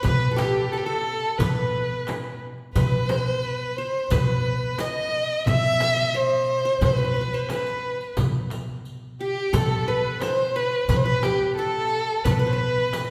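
An Arabic maqam ensemble piece in B maqam hijaz, this short excerpt from a longer work moves at a steady 88 BPM in a straight 4/4 with a longing, soulful mood. Up front, a single bowed violin carries the melody between G4 and E5, its warm tone shaped by expressive vibrato and portamento. Behind it, a bright, plectrum-plucked qanun with a bright-edged triple-string ring plays a second line in the same range, sitting in the background. A woody, dark upright bass with gut strings plays pizzicato on B2, giving a thumpy low anchor. The percussion comprises a very quiet, crisp metal-shell darbuka struck with hard hands, a small frame drum that is compressed and saturated in the background, and a riq with bright jingles played with soft hands. All six parts play throughout the 13.1 seconds, set in a wet recital hall reverb with a 1.7-second decay that suggests a church or concert hall.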